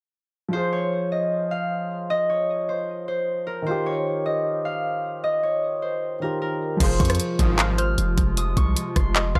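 A dry, gritty hardware recording in digital ambience opens this brooding, hard-hitting trap excerpt at 153 BPM in a half-time 4/4 feel, where an up-front fingerpicked concert harp rings out the melody through tape echo over a dark grand piano with audible action noise, moving from F minor to Ebadd9. At 6.8 seconds the beat drops: a tape-tinged trap kit with knocking kick, bright hats, handclaps, rim clicks and crash arrives alongside a deep, decaying sine 808 and fat sawtooth polysynth stabs with chorus. A hollow, bouncy square-wave pluck with ring modulation and tape echo joins at 7.6 seconds, and a warbling, nostalgic lo-fi pad with chorus and built-in reverb follows at 7.7 seconds.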